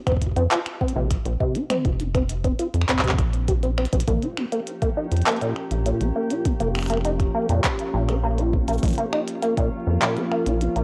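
This cerebral, glitchy IDM excerpt opens with a deep, sawtooth acid bass playing resonant arpeggios through lush chorus and tape echo, alongside a deep electronic kick and an up-front glitchy kit of clicky hi-hat, cabasa, finger snaps, handclaps and toms. A rubbery, wave-folded square bass with tube saturation joins at 0.4 seconds, and after a drum fill at 3.8 seconds a glassy, ethereal FM pad enters at 4.1 seconds with mellow, slow-attack sustained chords in ensemble chorus and built-in reverb. The whole has a dry, gritty hardware sound on cassette tape, touched by light reverb.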